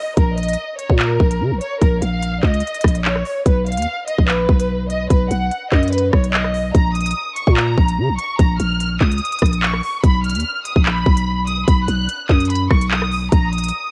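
Menacing and ominous, this half-time drill excerpt opens with a close, bowed violin section alone at 0.0 seconds, its expressive, vibrato-rich lines softened by a low-pass filter and cassette tape. At 0.2 seconds a growling, buzzy 808-style bass with a fast attack and decaying tail arrives with an up-front electronic drum kit of hard-clipped kick, crisp hi-hats, handclaps and rim clicks, also run through tape, as the harmony moves between Bbm and B. Digital ambience and a home-cassette sound give the lo-fi fragment its character until it cuts off at 13.9 seconds.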